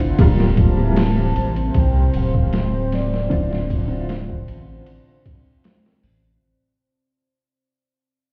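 Gritty, overdriven boom bap drums drive this dark, smoky trip hop fragment, with a thumpy kick, high-tuned snare, hi-hat and ride sounding pitched down and compressed in a small room, while a round analog bass anchors the low end from 0.2 s. A felt-muted upright piano with audible action noise plays soft accompaniment through tremolo, tape echo and a filter sweep, beneath a deep, detuned ambient pad with 12-bit sampler grit and a faint, breathy sine lead that drifts in with dub echo and vibrato at 0.6 s. The whole cut fades out from 0.2 s over vinyl crackle and club reverb, heard muffled as if through a wall, as the harmony moves from Gm7/D to Dm9.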